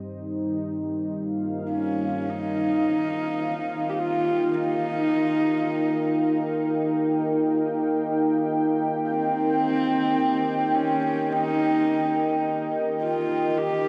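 A dreamy wash of huge reverb soaks this unsettling, ominous ambient fragment in free time, where a deep, detuned analog pad with chorus holds sustained chords from the start and a husky, intimate horsehead fiddle with light vibrato and analog delay enters at 1.7 seconds to carry a dark, airy-bowed melody.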